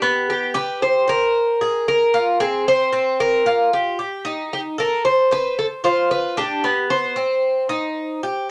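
Sultry and danceable, this short Latin passage in C minor moves at a straight 113 BPM in 4/4. Two acoustic Cuban tres parts play up front throughout its 8.5 seconds: one carries the melody in a narrow upper range while the other, a little lower in the mix, picks arpeggios beneath it. Both have the warm, metallic ring of paired strings, some of them octave-doubled, set in a moderate studio ambience as the harmony passes through Fm, Eb and G7 before settling on Cm.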